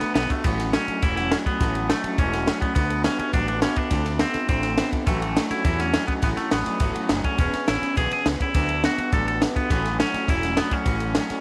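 A twangy, clean electric guitar sits up front carrying the melody, its bright picked lines trailing a tape echo across this short, rowdy rockabilly cut lifted from a longer piece. Beneath it, an electric guitar through a small old amp picks out a dark, slightly broken-up, lo-fi riff in the low register, while a growling fingered bass, overdriven and punchy, drives the bottom end. A compact cocktail drum kit, dry and close, pairs a punchy kick and high-tuned snare with dusky ride cymbals. Further back, a full-bodied steel-string dreadnought acoustic is picked in accompaniment, with the occasional finger squeak audible. The harmony moves through sixth chords on A, D and E with a brief turn to D minor seventh, all in a small room with a light touch of reverb that gives the whole thing a retro, straight-ahead energy.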